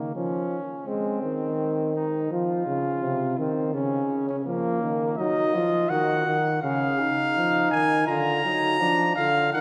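A straight 4/4 pulse at 83 BPM drives this contemplative, imitative classical canzona for brass ensemble, cut from a longer piece and moving through minor-leaning harmony from Bbm toward a closing Bb/D. A mellow flugelhorn carries the second line over an up-front trombone accompaniment, both played with light vibrato. At 5.2 s a clear, close-miked trumpet enters up front with the high melody, all three voices blooming in a wet church reverb.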